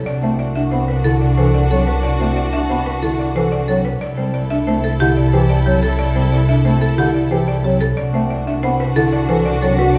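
A buzzing marimba struck with hard mallets opens this propulsive, bright minimalist classical pattern piece, its woody, percussive melody sitting between G4 and E5 at a brisk 182 BPM in a straight 6/4. Almost at once a symphonic double bass section settles on a low C2, lush and up front, while a studio string section holds smooth, bowed chords with vibrato in the middle register. A dark, worn grand piano adds arpeggios from C4 to A4, and a mellow, distant bass clarinet supplies accompaniment in its lower range until 9.7 seconds. The harmony moves from D13/C to C69 at 4.0 seconds and back to D13/C at 8.0 seconds, keeping the C pedal in the bass throughout. A recital hall reverb lends the whole a roomy glow over a small-room ambience, and the passage is cut from a longer piece.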